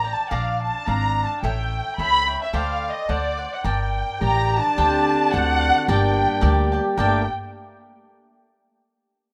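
A passionate, dramatic mariachi excerpt in a lilting 2/4, cut from a longer piece, with a gentle swing on the eighth notes. A dark, lush violin section carries the melody up front, its bowed lines rich with vibrato and portamento and a smooth top. Beneath it a crisp, picked cavaquinho supplies the accompaniment while a woody pizzicato upright bass anchors the low end close to the listener. At 4.2 seconds a distant, roomy trumpet enters with a classical-style second line touched by light vibrato, and at 4.8 seconds a tight, sombre brass ensemble adds sustained chords from afar. The harmony moves through suspended and dominant chords before settling on a minor add-nine colour, all heard in a small room with light reverb and the rough feel of a home demo mix.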